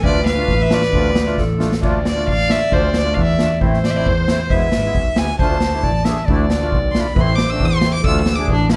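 A warm production with light reverb frames this festive yet bittersweet klezmer excerpt in D dorian sharp4, moving at 135 BPM in a straight 2/4. A rich, gut-string bowed violin with light vibrato carries the melody through slapback echo and plate reverb, taking a solo at 1.8 s after a drum fill that starts at 1.4 s, while a clear, present clarinet plays a second line over a reedy accordion accompaniment with light tremolo tuning. Underneath, a bowed double bass with an intense, smooth top holds the low end, and a street-band drum kit with a boomy kick, medium-tuned snare and dark cymbals adds crash, kick and snare in a big, airy room.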